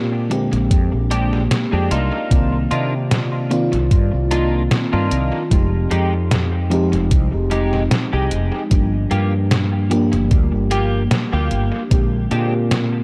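A gently swung 4/4 groove sets the pace, with a detuned 8-bit drum machine tapping hi-hat and a medium-tuned snare from 0.3 seconds and a thumpy, up-front electronic kick arriving at 0.7 seconds, both carrying a tape-softened, small-room character. This short vaporwave fragment, cut from a longer piece, feels melancholic and woozy, drifting through Bb13, Cm11, Fm9 and Gm7 before returning to Bb13. An FM electric piano layered with a soft pad holds the accompaniment, its dreamy, full-bodied tone coloured by lush chorus, cassette tape grit and dub echo. Underneath, a mellow fretless electric bass sits up front, dark and round with a punchy edge, thickened by tube saturation and a subtle chorus. A clean, picked electric guitar plays a compressed riff set back in the mix, smeared by analog chorus and dub echo. Light reverb and an echo-heavy, cassette-tinged mix wrap the whole excerpt in a hazy, worn glow.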